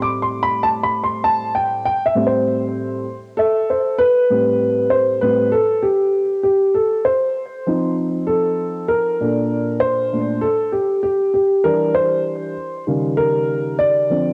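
A dark baby grand piano carries this smoky, nocturnal hip hop excerpt entirely on its own, ranging from A2 up to D6. Its tone is mellow and smooth, with a vintage character and audible action noise that makes the playing feel intimate and close. The piano sits up front in the mix, bathed in a moderate spring reverb, and the whole piece has the hazy character of a home recording on cassette. A swung sixteenth-note feel gives the solo a relaxed, late-night lean. The harmony opens on Am7, later moving through F7 at 6.8 seconds and Bbmaj9, then C9/E and a closing D#7 at 12.9 seconds, with a new section beginning at 4.3 seconds.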